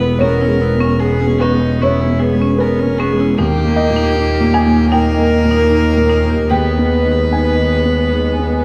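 A fragile, melancholic neoclassical piece opens with everything at once: a dark, mellow felt-muted upright piano; a pure, floating violin melody bowed sul tasto and placed up front; an intimate viola; a close double bass; a very quiet, detuned analog pad; and a woody marimba playing arpeggios in the background. Cut from a longer piece, it moves at a rubato 75 BPM in 4/4 in G# harmonic minor, passing from C#m7/E at 0.2 seconds to D# at 3.4 seconds and G#m/D# at 6.5 seconds. The marimba's hard-mallet, vintage tone and the soft, short-sustain piano sit inside a wet recital hall reverb.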